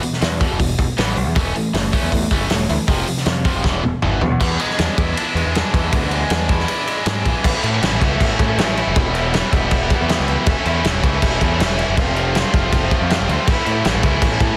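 Indie rock at 158 BPM in a straight 4/4, this short cut from a longer piece feels carefree with a wistful edge. A biting, double-tracked overdriven guitar drives the riff from the first beat, bright and picked, ranging from E2 to F4 and sitting up front. A loose acoustic drum kit plays alongside it, with a fat snare, punchy kick, crash, ride, hi-hat and toms, its sound saturated and gritty with a rolled-off top, and it caps the opening passage with a fill from 3.6 to 4.4 seconds. A growling picked electric bass joins at 0.2 seconds, direct and amped with overdrive, reaching down to E1. The harmony moves from E5 through A/E, F5 and E before settling on E7, then runs through A, Em, A/E and F and back to A in the closing stretch, all captured in a small room and given a dense, heavily limited modern master.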